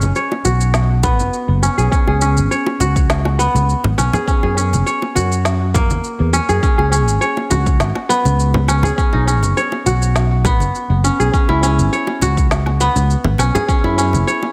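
Organic downtempo at 102 BPM in 4/4 with a straight feel, this hypnotic, mystical passage in C# dorian is cut from a longer piece and moves through chords such as B5, C#5, F#, C#m7 and F#7(no3). Up front, a fingerpicked kora plays ringing, crisp arpeggios from A#3 to C#5, softened by a low-pass filter and trailed by delay. Beside it, a sustaining fretless electric bass sits forward too, growly and amped, ranging from F#1 to F#2 with ensemble chorus and sidechain pumping. An electronic shaker, woody snare and woodblock carry an overdriven edge in a small room, while bright, close and dry congas and bongos stay in the background. A deep, layered electronic kick drum enters at 1.0 seconds and drops out at 13.8 seconds, and light reverb rounds out the mix.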